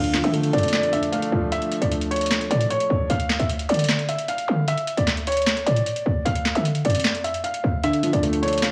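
Dark and eerie, this short trap cut from a longer hip hop piece moves at 152 BPM in a half-time feel, sitting in D harmonic minor over a steady D minor chord. A felt-muted upright piano carries the melody throughout, its soft, intimate tone thin with felt and touched by audible action noise, filtered and trailed by digital delay. Beneath it, a dark baby grand piano supplies up-front accompaniment with long sustain, playing until 3.1 seconds and returning at 7.8 seconds. A short 808-style bass hits punchy and tight, a sine with a noise layer, fast attack and decaying tail. The booming analog drum machine stays dry and forward, with a crisp snare, metallic hi-hats and handclaps. The whole recording sounds blown-out and overdriven, wrapped in light reverb and small room ambience.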